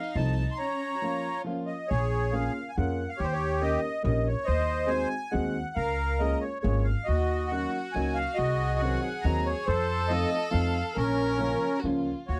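A lilting waltz in three with a gentle swing and a rubato feel carries this nostalgic, bittersweet musette fragment, cut from a longer piece. The accordion sings the melody up front from the very start, its reedy, sweet voice given a light tremolo tuning and a dark, smooth edge. A distant, bowed solo violin adds a clear second line with vibrato, sounding briefly at the opening and returning at 7.1 seconds to carry its line nearly to the close. Underneath, an intimate upright piano supplies the accompaniment with a natural, woody tone and audible action noise, while a thumpy pizzicato upright bass on gut strings anchors the low end. After a short break that begins at 0.6 seconds, the harmony winds through minor-key chords, a diminished turn and a dominant seventh before settling home. The dry, close sound recalls a 1970s studio, touched by light reverb.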